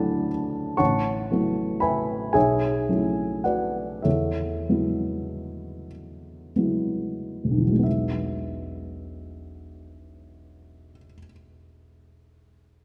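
Pastoral and dreamy, this short classical piece cut from a longer work drifts in a slow, rubato 6/8 at roughly 30-44 BPM, in E mixolydian with the tuning set at A4 = 437 Hz. A dark baby grand piano carries the accompaniment across a broad register, its mellow, intimate tone sitting up front with audible action noise and short sustain. A wet concert hall reverb surrounds it, and the opening passage moves through chords such as Dadd9, A69, B9sus4 and Eadd9 while slowing down through its first 7.9 seconds, before a contrasting section follows.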